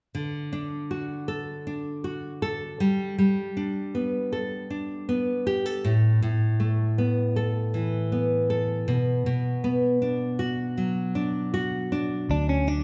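A wet, large studio reverb with a 1.4-second tail surrounds this pop piece, which sounds like a band playing live in one room. It is sunny and carefree, moving at an easy 79 BPM in a straight 4/4 in D major. For most of its length a full-bodied, fingerpicked nylon-string guitar carries the accompaniment alone, its classical tone sitting up front as the chords move from D to Gadd9, then Asus2 and Bm. At 12.3 seconds the harmony settles on D5, and two more parts join. A twangy, compressed electric guitar at the edge of break-up picks a short melody between C#4 and D4, while a vintage muted bass, dark, round and punchy, plays a low D. The piece is cut from a longer work and ends at 12.8 seconds, just after these new voices arrive.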